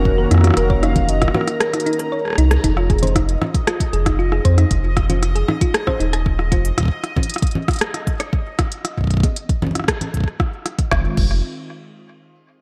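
This glitchy, intricate IDM excerpt in F phrygian at 116 BPM opens with a warbling, nostalgic lead soaked in lush chorus, cassette tape, delay and shimmer reverb. Beneath it sit a mellow, detuned sawtooth pad, tine-like FM plucks playing arpeggios, a round, deep analog bass with tube saturation, and a bubbling, resonant stepped-filter texture in the background. Up front, a tape-warm electronic kick and a small-room kit of congas, crash, smooth hats, rim clicks and a woody snare with delay drive the groove; the kick briefly drops out ahead of a drum fill starting at 2.1 seconds and a band accent at 2.5 seconds, the plucks stop at 6.6 seconds, and the pad and bass return on Fm7 at 10.9 seconds.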